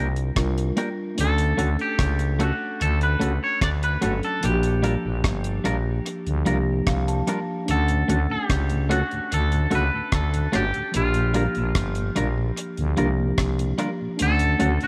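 A small room with light reverb frames this smooth, tender lovers rock reggae passage at 74 BPM, cut from a longer piece and moving between Bb6 and Dmaj7 chords. An up-front, twangy, fingered electric guitar carries the melody through tape echo over a mellow tine electric piano, which plays a short fill at 6.5 seconds, while bright, compressed clean guitar stabs join a thick, growling FM bass that sits prominently up front. A dry acoustic drum kit with a tight kick, hi-hat and rim click also carries tape echo, and from 7.9 seconds a very quiet, round, dark tonewheel organ with key click and slow rotary speaker joins the accompaniment.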